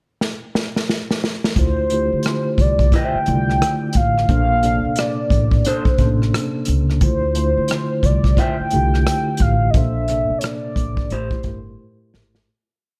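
A horn-like synth lead with a round, detuned sawtooth tone, soft attack, vibrato, chorus and slapback echo sits up front, carrying a motif-based melody through this smooth, late-night R&B and neo-soul piece in D minor at 88 BPM, swung on the sixteenths. An unplugged drum kit opens with a fill, then plays a laid-back beat with ghost notes, a punchy kick and bundle sticks. At 1.6 seconds it is joined by a woody, growly pizzicato upright bass, a clean tine electric piano pushing spread chords through its built-in speakers over Dm9 and Bbmaj9, and the lead, while a slightly broken-up, lo-fi electric guitar through a small old amp adds sparse, clipped chords with spring reverb from 2.9 seconds before the piece fades out from 9.7 seconds and closes on Am7.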